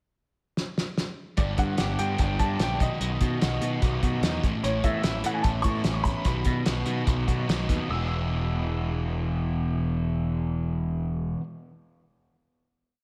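A straight 4/4 rock groove at 147 BPM opens with a cloth-damped, thuddy drum fill at 0.6 seconds, its fat snare and tight kick sitting up front in a small room, before the full band enters at 1.4 seconds on a wistful, carefree indie rock pre-chorus in E major moving through G, B and Aadd9. A growling, bright overdriven bass plays octave lines up front, one crunchy, dark guitar strums chords in the background with spring reverb, and a second overdriven guitar picks arpeggios through lush chorus and analog delay, while a worn, woody, slightly detuned upright piano sings song-like motifs with slapback echo. The drums stop at 7.8 seconds and the piece closes on a long, sustained E chord that rings out until 11.4 seconds.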